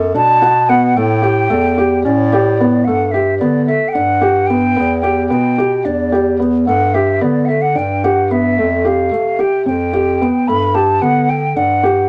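A moderate studio ambience with a short, natural decay frames this brief excerpt of contemporary chamber music, setting three close, up-front instruments in a studio space. The mood is shimmering and playful, moving in an uneven 7/8 meter with a straight feel. A felt-muted upright piano spins soft arpeggios in its middle register, its muffled, intimate tone carrying audible action noise. Beneath it, a bass clarinet in a classical style supplies a mellow bass line. The silver concert flute enters at 0.2 seconds with a pure, hollow melody in its upper range, tongued and colored by vibrato. After opening on Bm7 and A7, the harmony shifts at 2.9 seconds into a second section of lush chords such as Gmaj9, Em7, Gadd9 and Fadd9, returning to Gmaj9 as the clip ends.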